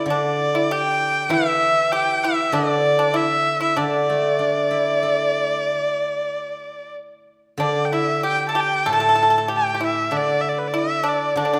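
Chinese traditional chamber music, graceful and festive, moves with a flexible rubato feel in this short cut from a longer piece. A single bowed erhu carries the melody up front, its rich, boxy tone shaped by vibrato and smooth, even portamento slides. Beneath it, a pipa played with fingerpicks adds a second line with a dry, percussive attack, while a steel-string zither, also fingerpicked, fills out the accompaniment with bright, ringing, silvery notes reaching down into the low register. All three play together from the first moment to the close at 11.6 seconds, with the music turning to a new section at 7.6 seconds. The ensemble sits in a wet recital hall reverb that lends the performance a sense of space.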